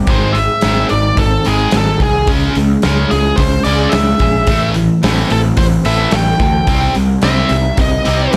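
The recording is lightly reverberant, a brief 8.4-second cut from a longer quiet-loud alternative rock piece with a dark, angsty mood, moving at 109 BPM in a straight 4/4. A bright, overdriven lead guitar sits up front and takes a solo across the whole passage, its biting melody given slapback echo and plate reverb. Beneath it, a tight, double-tracked distorted guitar drives a picked riff, while a slightly broken-up guitar through a small old amp plays compressed arpeggios in the background, shimmering with tremolo and plate reverb. A growly, fuzz-laden picked bass anchors the low end, and a big, dark, smooth acoustic rock kit in a large room adds a punchy kick, a medium-tuned snare and hi-hat. The harmony shifts from G# to C#m, then Am and Cm, giving the passage a brooding, unsettled pull.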